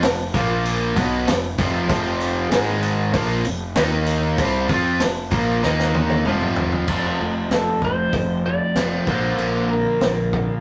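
A straight 4/4 pulse at 96 BPM drives this swaggering, confident classic rock passage in F mixolydian, cut from a longer piece. A vintage drum kit with a punchy kick and dark cymbals sits up front beside a biting overdriven guitar riff, while a brighter, crunchy second guitar and a woody upright piano stay in the background and a fuzz-laden fingered bass growls underneath, with a drum fill at 5.6 seconds leading into a new section. The piano drops out at 6.8 seconds, and a clean lap steel guitar enters at 7.5 seconds with a slide melody and volume swells, all captured with a rough rehearsal-room feel, tube saturation and a wet studio reverb.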